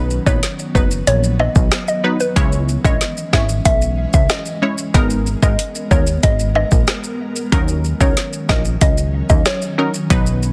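An up-front electronic afro-pop drum kit drives this hypnotic, tough dancehall cut at 93 BPM in Eb phrygian, its deep kick, woody snare with soft clipping, metallic hats and rim clicks sitting over a funky, plucky analog bass with ring-modulated bite. Punchy, detuned sawtooth chord stabs with chorus move through B, Dbm, Abmadd9 and Ebm7, while a hollow, bouncy square-wave pluck carries the melody from 0.3 seconds through chorus and delay, and close, dry maracas and timbales ring underneath. An ethereal, mellow pad with ensemble chorus, built-in reverb and sidechain pumping glows behind it all in a dense, heavily limited mix with little room sound.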